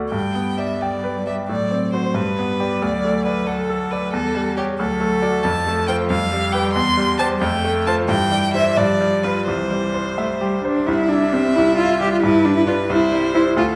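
In a rubato 6/8 counted at 84-93 BPM in dotted quarters, this graceful, lively classical-period piano trio movement opens in G major and moves to C major from 5.4 s, cut from a longer piece. A bright grand piano carries the accompaniment up front with brilliant, long-sustaining tone and audible action noise, while a clear, focused violin sings the melody close and forward with vibrato, and a rich bowed cello supplies a second line beneath it. The trio sits in a wet recital-hall reverb with a faint mains hum in the background.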